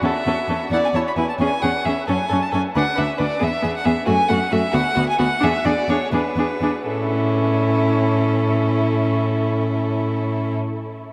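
A single bowed violin carries the melody up front, its rich, vibrato-laden tone smooth and even across the top, leading this lively, graceful fragment of a quick classical-period movement for string quartet in a lilting 6/8. A second violin enters at 0.1 s with a warm, focused counter-line just beneath it. The viola fills out the accompaniment with a rich, focused, smooth-topped sound, while a close, up-front cello anchors the bass in its low register. The music slows from 3.4 s to 6.9 s before a fresh section begins at 6.9 s. Every part is bathed in a huge, wet reverb that places the quartet in a vast, echoing hall, lending the lively phrases a lingering glow.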